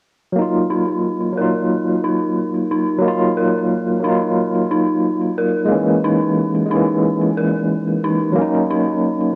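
Trip hop in Eb minor at 90 BPM with a swung 4/4 feel, this dark, smoky fragment sets a barky, gritty overdriven tine electric piano, played through a combo amp with tremolo and tape echo, against an eerie, inharmonic FM synth bell that enters at 0.7 seconds with detuned arpeggios under chorus and a filter sweep, both up front over chords moving from Ebmadd9 to Gb6 in a cassette home recording with light digital ambience.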